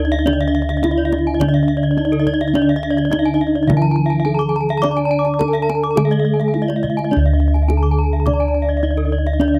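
The recording is dry and close, with little reverb, in a vintage 1970s studio manner that gives this short excerpt of Balinese gamelan a present, intimate sound. Set in D pelog at 105 BPM in a straight 4/4, the mood is shimmering and ceremonial. A bronze metallophone played with padded disc mallets carries the melody between D4 and D5, mellow and soft with a band-limited, old-fashioned sheen. Beneath it, another metallophone struck with a wooden mallet sits in the background with its accompaniment, while bossed gongs, round and beating under padded beaters, hold the bass up front. Two more metallophones played with horn mallets spin arpeggios higher up: one bright, full and close-miked, the other dark and smooth, its range reaching down to a low-tuned Bb4. The paired tuning of the metallophones produces shimmering beats across the ensemble, and the kendang adds tight, acoustic percussion under soft hands from 0.1 seconds.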